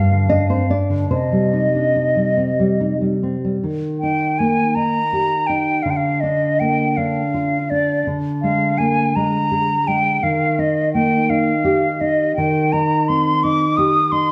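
A hollow, pure concert flute with vibrato and tongued notes opens together with a dark, full-bodied nylon-string guitar, both up front, in an elegiac, solemn romantic duo in 6/8 at a rubato 47-59 BPM, tuned to A4 = 435 Hz. The flute carries the melody with a slapback echo, while the thumb-plucked guitar accompanies with audible finger squeak, moving from C minor into Eb major at 3.6 s through Bb/D, Bb7/D and back toward Cm/Eb. A moderate recital hall reverb surrounds the pair throughout this 14.3-second excerpt.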